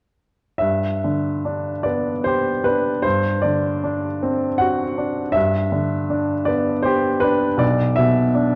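Classical romantic nocturne for solo piano in G major, tender and nostalgic, unfolding in a rubato 3/4 at roughly 70-83 BPM as a clear, intimate baby grand sits up front with audible action noise from 0.6 to 8.6 seconds, its natural tone bathed in a moderate recital hall reverb and colored by the warbly pitch drift of worn cassette tape in this short excerpt cut from a longer piece.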